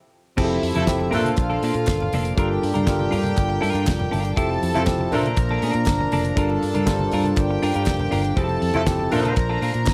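After a brief silence, a driving, glamorous disco groove arrives at 0.4 s, with a dry, damped 70s drum kit up front, its fat snare and tight kick alongside punchy fingered electric bass, a clean tine electric piano through a combo amp, and a compressed, picked semi-hollow guitar. A close, reedy violin section with a gut-string, period tone carries the second line as a French horn section holds classical-style chords in the background, while a distant, roomy horn section in octaves adds mellow stabs, first at 0.8 s. Very quiet saturated congas and crisp group handclaps fill out the percussion, all set in a small room with light reverb in this excerpt from a longer piece.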